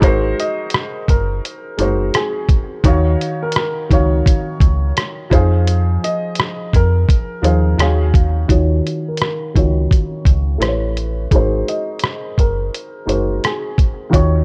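A felt-muted upright piano, soft and intimate with audible action noise and a cassette-tape haze, opens this hazy, melancholic lo-fi hip hop excerpt. It plays alongside a metallic, fast-attack FM bass and a muffled, pitched-down sampler drum kit of thumpy kick, hi-hat and rim click, swung at 85 BPM in Eb dorian. From 0.4 seconds a woody, slightly detuned second upright piano carries the melody through a low-pass filter and tape echo, drifting over Ab9, Ebm7 and Fm7 chords in a studio reverb. At 8.5 seconds a filter sweep marks the move into a new section, where an A9 chord briefly appears before the harmony settles back on Ab9.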